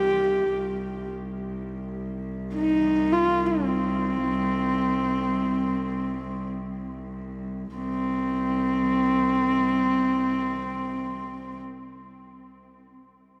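A husky horsehead fiddle and a warm bowed cello drone sound together from the first moment of this vast, windswept passage of Mongolian folk music, cut from a longer piece. Played up front and intimate by one player, the fiddle carries the melody with light vibrato, portamento, soft attacks and an airy bow, while the sul tasto cello holds a pure, floating tone beneath it. The pace slows until a new section begins at 7.8 seconds, a huge, wet ambient reverb surrounds the sound, and both parts stop at 11.6 seconds.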